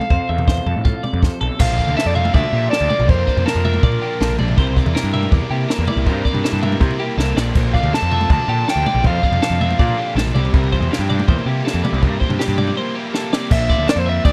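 An up-front overdriven electric guitar carries the melody with a slapback echo, its warm lead heard in phrases from 0.0 to 4.4 seconds, again from 7.7 to 10.1 seconds, and briefly near the close of this short cut from a longer piece of intricate, wistful math rock and midwest emo at 161 BPM in a straight 4/4. Beneath it, a punchy, up-front fuzz bass with overdrive drives the low end, while a compact cocktail drum kit with a punchy kick, high-tuned snare and dark cymbals adds toms and crashes and plays short fills. A bright, twangy twelve-string electric guitar spins clean, compressed arpeggios throughout, and a slightly broken-up, lo-fi guitar through a small old amp sits in the background as accompaniment. At 1.6 seconds a double-tracked cranked stack guitar enters with an overdriven riff as the harmony moves from Fmaj7 into Bbmaj9, C9, back to Bbmaj9 and then C7sus4 before a brief break near 13 seconds. 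The sound is dry and close, like a 1970s studio recording with little reverb.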